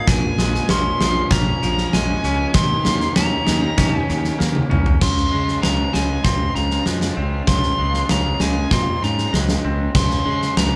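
Cinematic and brooding, this post-rock excerpt moves in a straight 4/4 through a Bbm7 to Eb7 progression before passing to Dbmaj7 and then Bbm7/Db. An overdriven lead guitar carries the melody high in its range with a dark, smooth, picked tone, while a clean, compressed electric guitar with a twangy edge plays arpeggios beneath it. A fuzzy, fingered electric bass adds gritty overdriven weight, and a very quiet studio string section holds rich, bowed chords with light vibrato. The huge arena drum kit sits up front, its fat snare, punchy kick, toms and crash cymbal heard in a big room with a rolled-off top. A drum fill at 4.4 seconds leads into a build-up from 5.0 seconds, and the band sounds as if playing live together in one large studio with moderate reverb.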